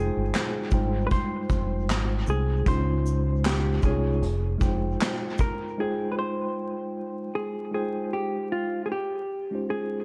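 Reflective and melancholic, this lo-fi hip hop excerpt in F minor moves at 77 BPM with a swung feel, as a dark, clean hollow-body jazz guitar carries the melody through a low-pass filter and dub echo over a mellow tine electric piano colored by cassette tape, both lasting the full 10 seconds across Fm9 and Dbmaj9 chords. A round, deep dub fingered electric bass plays only until 5.0 seconds, while a vintage brush drum kit with a punchy kick, handclaps, hi-hat, shaker and a rolled-off top sits up front from 0.3 to 5.6 seconds, its dub echo adding to the pumping room sound. Light reverb, small room ambience and vinyl crackle frame the echo-heavy mix, which shifts into a new section at 5.8 seconds, where guitar and piano carry on alone.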